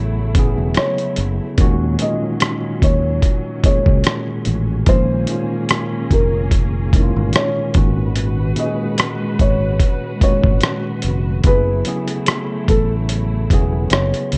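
Melancholic and hazy, this lo-fi hip hop fragment in Eb minor moves at 73 BPM with lightly swung sixteenths, as a slightly out-of-tune tine electric piano, a lush bowed string section and a warm fingered electric bass sit under Gbm7, Ebm7, Bbm7 and Abm7 chords; a gritty, compressed sampler-style kit of thumpy kick, hi-hat and rim click joins up front at 0.3 s, and a soft, felt-muted upright piano carries a mellow, intimate melody from 0.8 s, all wrapped in light reverb and worn cassette warble with drifting pitch.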